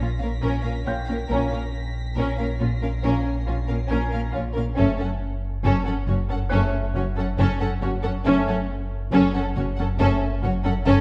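A deep, full sine sub bass sits up front, holding a sustained drone with its octave beneath this ominous, uneasy suspense cue, cut from a longer cinematic score and moving at a slow 69 BPM in 4/4. Bowed double basses and lush cellos reinforce the low end from the background, while a distant viola section sustains a single note with expressive portamento and a second violin line adds rich, vibrato-laden body. Above them, a clear, close violin section carries the melody, and a high, distant violin texture glimmers at the top until 4.3 seconds. A dark, vintage baby grand piano, very quiet and with long sustain, adds a smooth, mellow layer of texture in its upper register, and a French horn section enters at 1.3 seconds with mellow, roomy sustained chords. The harmony shifts from B-flat minor to G-flat minor at 4.8 seconds, all set in a moderate scoring-stage reverb with a dark, warm production.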